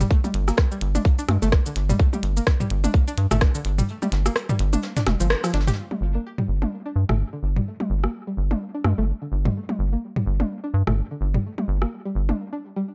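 Sparse and clinical, this dark, lightly reverberant minimal techno excerpt rides a swung 4/4 groove where a rubbery, nasal square bass and a twangy, string-like resonator pluck riff with chorus, cassette tape wear, sidechain pumping and digital delay run nearly throughout, while clicky filtered hats, cabasa and rim clicks, faint brushed hi-hat and snare, and layered techno rim clicks and toms sit around a tight, up-front electronic kick that drops out at 3.9 seconds before a band accent at 5.3 seconds and a closing break at 12.4 seconds.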